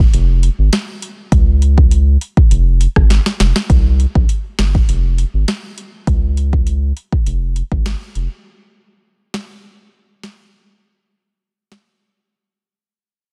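An up-front afro-pop drum kit drives this hypnotic, bouncy dancehall cut in F minor at 101 BPM, its deep kick, sharp soft-clipped snare, rim clicks and metallic hi-hats carrying a produced, tape-tinged electronic character, with a drum fill at 3.1 seconds. A round, dark analog bass with a wave-folded edge sits up front beside it, sustaining low notes until 8.3 seconds. The section fades from 3.7 seconds under a digital ambience and a dense, heavily limited modern master, ending in a break after the drums stop.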